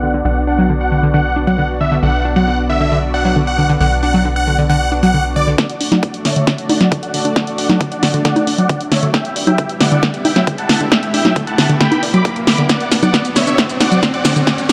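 An excerpt of euphoric uplifting trance in D major at 135 BPM opens with a huge, detuned supersaw lead carrying the melody through a low-pass filter and dub echo, a thick, chorused and phased unison pad holding sustained chords, a round analog pluck spinning arpeggios, and a tight sawtooth sequencer bass, all pumping against the sidechain over Bm until 5.6 s, when the bass drops out and a dry, punchy analog drum machine with congas, hi-hat, shaker and snare arrives up front beside an overdriven kick in the background for a build-up with a drum fill and filter sweeps on the lead and pluck through D, Em and back to Bm, while a riser enters at 7.7 s, all set in a dark, lush hall.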